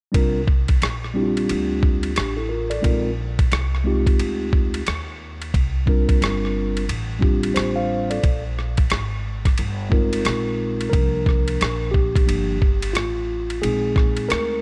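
Digital ambience surrounds this cool, relaxed jazz-hop cut, taken from a longer hip hop piece and set at 89 BPM in 4/4 with a 63% swing on the sixteenths. Up front, a sampler-style boom bap drum kit sounds compressed, pitched down and gritty, its thumpy kick sitting under hi-hat, ride cymbal and rim clicks. An acoustic upright bass, plucked pizzicato on steel strings, gives a woody, warm low end between G1 and Eb2. A mellow tine electric piano, clean, direct and warm, carries the accompaniment from F3 to F5, moving between C9sus4 and Bb9sus4 chords. At 10.9 seconds the piano steps forward into a solo that runs to the end at 14.6 seconds, while bass and drums keep playing beneath it.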